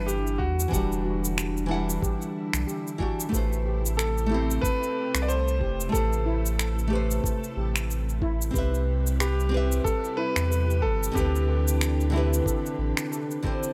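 Blissful and smooth, this sunset chillout excerpt moves at 92 BPM in 4/4 with a swung sixteenth feel, as a clear concert grand piano carries the melody through digital delay over a full-bodied, fingerpicked nylon-string guitar and a silky, vintage string machine with ensemble chorus sitting in the background. A shimmering steel pan plays delayed arpeggios under a filter sweep, while a round, up-front sine sub bass stops at 12.9 seconds, and a gritty, thumpy electronic kick enters at 0.4 seconds to join layered electronic cabasa and finger snaps that come in at 0.1 seconds. Light reverb and digital ambience frame the harmony as it moves from Em9 to Am9, Cmaj7 and D13sus4.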